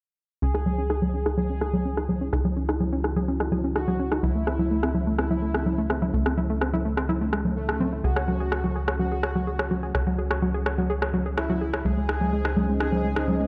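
A straight 4/4 groove at 126 BPM builds as electronic rim clicks and congas enter at 0.5 seconds, layered and up front, re-recorded in a large room with low-pass filtering on the snare, percussion and room sound, while a filter sweep runs across the drums. Alongside them, from 0.4 seconds, a tight, punchy sequencer bass drives on C#2 with a fast-attack sawtooth and square-wave pluck that decays quickly. This fragment of a longer melodic techno piece sits in C# harmonic minor, moving through C#m, A/C#, F#m/C# and G#/C# for a dark, dramatic mood. A warbly, dusty pluck spins lo-fi arpeggios, wave-folded and chorused with dub echo and its own filter sweep, while a soft, smooth supersaw carries the detuned unison melody through a low-pass filter and dub echo, also swept. From 1.6 seconds, a deep, moody analog pad holds sustained chords in the background, its slow attack colored by chorus and phaser. 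Light reverb and digital ambience give the whole production a dark, warm finish.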